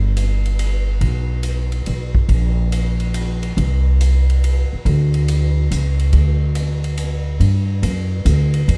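A woody, growly pizzicato upright bass with thumpy steel strings opens this relaxed, swinging jazz trio excerpt at 141 BPM in 3/4, sitting up front between G1 and G2, while a big-band drum kit of hi-hat, ride cymbal and punchy kick joins at 0.2 seconds from a big room lower in the mix, all in a dry, dusky production that shifts to a new section at 7.4 seconds.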